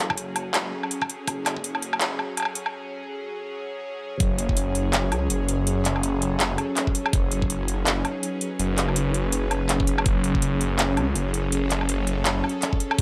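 A string-like, sidechain-pumped drone on an F#madd9 chord and a swirling, phased, detuned saw bass open this tense, dark half-time drum and bass piece at 164 BPM in F# dorian, joined almost at once by a knocking electronic kick and a tape-warm kit of handclaps, metallic hi-hats and woodblock, building up to a break at 2.7 seconds before the drop at 4.2 seconds brings in a very quiet, pulsing gated texture, all set in a moderate echo-chamber reverb.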